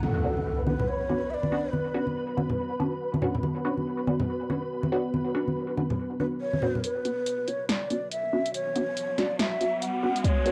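A breathy, tape-worn low ney carries the melody through dub echo over a dark, detuned ambient pad and muted, phased dub chord stabs on Bmadd9 in this meditative, cavernous deep dubstep fragment at 141 BPM in half-time B minor. After an opening electronic impact, soft-handed congas and a flickering grainy texture give way at 6.8 seconds to an overdriven deep house kit with a punchy snare, a riser from 7.8 seconds and a single deep kick at 10.2 seconds.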